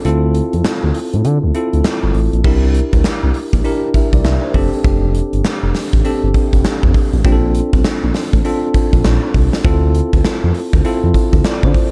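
Dark, warm small-room production frames this upbeat, flirty new jack swing cut with a swung sixteenth-note feel, where a punchy, up-front gated 80s drum kit with bright cymbals, handclaps and gritty vintage sampler texture plays through a 2.4-second opening break, while a smooth sawtooth-and-triangle synth bass glides with vibrato from the start beneath a clean, bell-like tine electric piano playing seventh and sixth chords.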